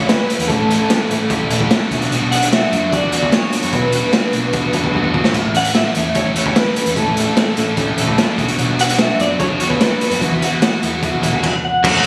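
Jangly and carefree, this indie rock excerpt moves at 148 BPM in A major, with a dark, slightly broken-up lead guitar through a small old amp carrying the melody with tremolo and slapback echo over a crunchy overdriven riff guitar and a bright, scooped high-gain guitar with distortion and subtle chorus. A gritty, up-front garage drum kit with a punchy kick, dark cymbals and a pumping small-room sound drives the track, with a fill at 4.9 seconds, while a round, hollow-body short-scale bass sits underneath. The chords cycle between A and Bm before landing on Esus2, and a soft, flute-like tonewheel organ with key click and slow rotary speaker enters in the background at 11.8 seconds, all captured on a phone in the room with a raw feel.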